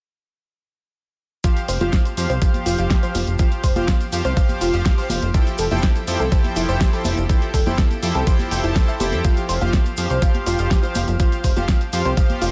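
A steady pulse at 123 BPM drives this hopeful, euphoric progressive house excerpt in F major, with a knocking, overdriven electronic kick sitting up front from 1.4 seconds, layered with a pop kit's fat snare and warm hats that pump against the sidechain. A grainy, bright tube shaker and softly played, ringing congas and bongos sit in the background, the hand drums also breathing with sidechain pumping. A punchy, funky analog bass enters at 1.7 seconds, its plucky sawtooth and pulse tones carrying a ring-modulated edge up front. Above it, a glassy, crystalline wavetable pluck spins arpeggios through chorus and dub echo under a filter sweep, while a smooth, detuned supersaw adds sustained stabs with a sub octave, both pumping with the sidechain. The harmony moves from Fsus2 to Am7/F at 5.3 seconds and back to Fsus2, all held in a digital ambience.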